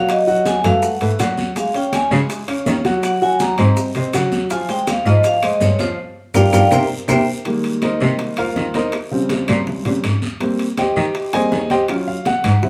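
Sultry and sophisticated, this Afro-Cuban jazz excerpt at 163 BPM opens with a ringing, metallic vibraphone solo with slow motor vibrato over up-front woody upright piano, a smooth bowed cello carrying the bass, very quiet, close and dry round low-tuned bongos, raspy guiro, and a background bed of bright high-tuned congas, metal-shell timbales, grainy maracas and claves, with a band accent and drum fill leading into a piano solo at 7.5 seconds, all in a large reverberant studio room.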